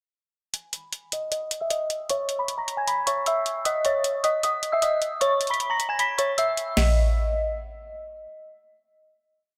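Melancholic and eerie, this short trap piece in G# minor moves at 154 BPM with a half-time feel, built around a dark, detuned FM synth bell whose warbling, inharmonic looping melody is doubled in octaves and run through chorus, phaser, delay and a filter sweep, repeated like a sampled loop over G#m, C#m, C#sus2 and E5. A booming analog drum machine sits up front with a deep kick, tonal snare and metallic hats rolling in fast bursts, its kick dropping out from 5.2 to 6.8 s before the beat ends at 6.9 s. The bell then rings on alone as a final note, fading into a lush hall reverb.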